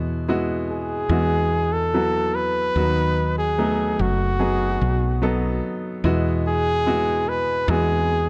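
Pop ballad in a heartfelt, emotional mood, built on a natural-sounding baby grand piano with short sustain and a round, punchy fretless electric bass that sits dark and direct at the front of the mix. At 0.7 s a warm flugelhorn takes the solo melody in a jazz style, with soft attacks, scooped notes and vibrato, moving between Eadd9 and B chords. The short passage, cut from a longer piece, is set in a small-room ambience.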